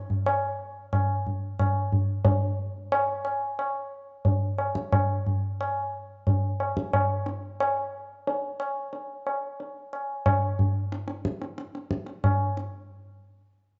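Heard through worn cassette tape with a warbly pitch drift and a muffled top end, this short fragment of Indian classical music sits in a moderate recital-hall reverb. A lone tabla, low-tuned and ringing, plays up front in free time from 0.1 to 12.8 seconds. The mood is devotional and serene, and the passage is clearly cut from a longer performance.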